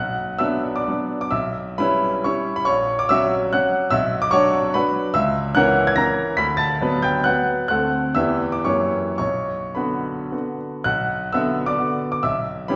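A wet recital-hall reverb gives this short passage from a longer piece a sense of being heard from further back in the room, though the solo grand piano still comes through clear and natural, spanning A#1 to B6. It is a wistful, nostalgic romantic dance in 3/4 and B minor, with dotted rhythms and a rubato feel that lets the tempo move between 102 and 158 BPM. Over its 12.8 seconds the harmony circles through darker colours such as F#7/A#, A#dim/C# and F#7b9 before settling back on Bm, with the opening phrase returning at 10.9 seconds.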